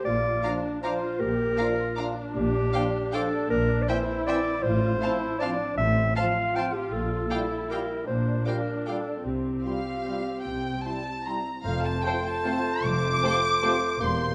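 A wet recital-hall reverb surrounds this excerpt from a longer orchestral ballroom waltz in F major, elegant and festive, moving at 155 BPM in 3/4 with uneven beats and rubato. Muted violins carry the melody from 0.4 seconds, their con sordino tone veiled and vibrato-laden, while a second violin line, violas, cellos and double basses supply dark accompaniment and bass. A mellow clarinet sits up front as a second line from the very start, and a distant French horn section holds sustained chords in the background. The harmony moves through Bb, Gm7/Bb, C7/Bb and F/A before settling on Csus4 and C. When the music arrives on F at 11.6 seconds, a pure, silvery flute, a clear oboe and a dark bassoon join in, followed at 12.0 seconds by quiet trombone chords and bright trumpet stabs that lend the close a festive lift.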